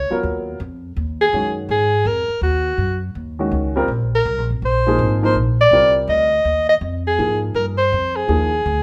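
Searching and cool, this brief modal jazz passage swings at 164 BPM in 4/4, moving from G#9sus4 to A#9sus4 at 3.9 seconds. A soprano saxophone carries the solo melody with light vibrato and a smooth top, over a woody pizzicato upright bass on steel strings. A dark, mellow baby grand piano comps intimately with short sustain and audible action noise, all three up front in a moderate large-studio reverb.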